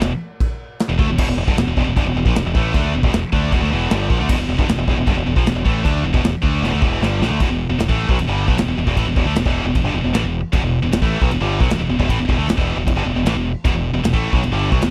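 Dark and aggressive, this heavy metal excerpt drives at 154 BPM in a straight 4/4 in E minor, sitting on an E minor chord from the start. Two bright, high-gain electric guitars play picked, distorted riffs spanning E2 to D4 throughout the 14.9 seconds, with the second guitar set further back in the background. A growling fingered electric bass, overdriven and up front, carries the low end between E1 and D2 with a direct and amped edge. An acoustic studio drum kit with a punchy kick, a medium-tuned snare, crash and china cymbals fills out the sound in a pumping room. A drum fill from 6.6 to 7.4 seconds leads into a new section at 7.4 seconds, and the whole has a dry, close sound with little reverb.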